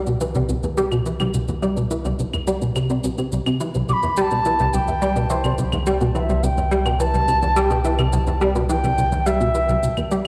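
A punchy, funky analog bass riff sits up front from the start, its sawtooth and square-wave tone roughened by ring modulation and wave-folding, each note snapping open with a filter pluck before decaying into ensemble chorus and delay. Beneath it, a deep, round sine sub bass holds a sustained low C as it fades in over the whole passage, while quiet electronic shaker and claves tick along with their own delay. At 3.9 s a wooden flute enters up front, pure and crisp with vibrato and lifted highs, carrying the melody over the pulse. This is ambient, sequencer-driven space music in a straight 4/4 on a single C chord, and its mood is expansive and luminous. A wet plate reverb and the large, bare-room ambience of a big sound system give the mix a spacious bloom, and the recording is cut from a longer piece.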